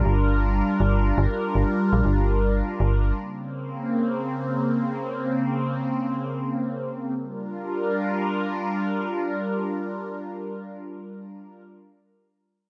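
IDM in free time with an intricate, glitchy mood, this excerpt is built on a swirling, detuned analog pad whose slow-attack sawtooth chords, coloured by phaser and chorus, sustain from Gm7 to Bbmadd9 and back across its 11.6 seconds, while a metallic FM bass with a fast, decaying attack and tube saturation sits up front only from 0.1 to 3.1 seconds, all within a moderate spring reverb.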